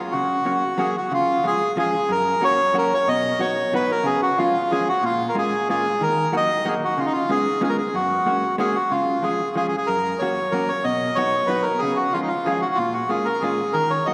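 Musette in 3/4 at 185 BPM, charming and nostalgic, cut from a longer piece. An up-front, reedy bandoneon carries the melody from the start, while a dark, clean, picked electric hollow-body jazz guitar, compressed and also up front, supplies the accompaniment beneath it through chords like F#, C#, B and A#m7. A long church reverb of 3.7 seconds bathes the recording in the resonance of a large hall.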